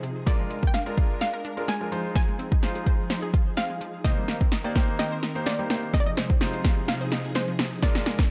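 A dark, lightly reverberant production with a digital ambience frames this driving, energetic dance-pop build-up, cut from a longer piece and carried by an up-front, overdriven deep house drum kit with a deep kick, punchy snare and metallic hats playing a fill throughout. A lush, detuned unison pluck with a noise layer carries the melody through dub echo, while a second, brighter unison pluck sits in the background with arpeggios, sidechain pumping and dub echo. Vintage string-machine violas hold soft-attack chords with ensemble chorus and sidechain pumping, and a brilliant, polished concert grand piano enters at 0.3 seconds to accompany chords moving from Bb7 through Fm7 and Cm7.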